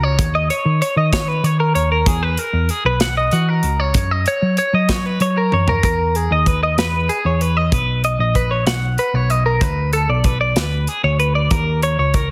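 Intricate and playful, this short math rock and midwest emo cut in a straight 6/8 sets a bright, twangy twelve-string electric guitar spinning arpeggios through spring reverb over a dark, round hollow-body bass and a tight, polished acoustic drum kit that enters at 0.2 seconds, with a drum fill at 5.5 seconds leading into a second section, all pressed into a dry, heavily compressed radio sound.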